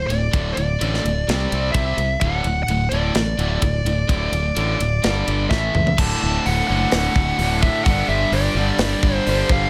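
Hard rock at 128 BPM in D mixolydian, energetic and swaggering, with a dark, distorted lead guitar carrying the melody up front through slapback echo over picked riffs from an overdriven semi-hollow guitar and a scooped high-gain guitar, a growly, punchy fingered bass, and a tight metal drum kit with a rolled-off top whose fill at 5.5 s leads into a new section where a very quiet double-tracked distorted guitar joins at 6.0 s, all in a short cut from a longer piece with light reverb.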